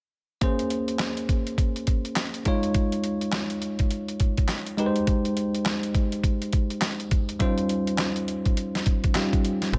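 Confident and slick, this new jack swing R&B excerpt at 103 BPM in Bb dorian sets a bell-like tine electric piano moving through Bbm9, Eb9sus4, Abmaj7 and Dbmaj9#11 over a gritty, pitched-down boom bap drum kit with a thumpy kick, handclaps and hi-hat swung on the 16ths, in digital ambience, and a dark, round fingered dub bass lands a single low Bb at 9.7 seconds.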